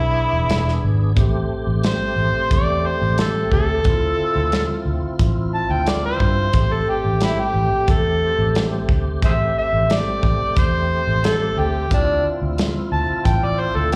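Straight-eighth soul blues in A minor at 89 BPM, this soulful, smoky live club excerpt features a gritty, amplified harmonica with slapback echo taking a jazz-style solo with tongue slaps and light vibrato from 1.2 seconds over Am7 and Dm7 changes, backed by a full tonewheel organ through a slow rotary speaker with chorus vibrato, a dark, round foam-muted electric bass, and a dry, warm soul drum kit of hi-hat, tight kick and snare entering at 0.5 seconds, all heard through the venue's PA with club reverb.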